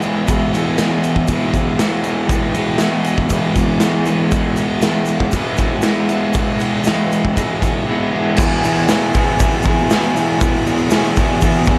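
Light reverb surrounds this raw, rowdy garage rock cut, lifted from a longer piece, at 118 BPM in straight 4/4 on E major, with a bright, crunchy overdriven electric guitar riff, picked and double-tracked, up front. The acoustic drum kit sits up front too, saturated and gritty in a pumping stone room, with a punchy kick, medium-tuned snare, hi-hat, ride and crash under a rolled-off top, while a grainy egg shaker stays close and dry in the background. All three parts play throughout, moving into a new section at 8.4 seconds and carrying on to the end.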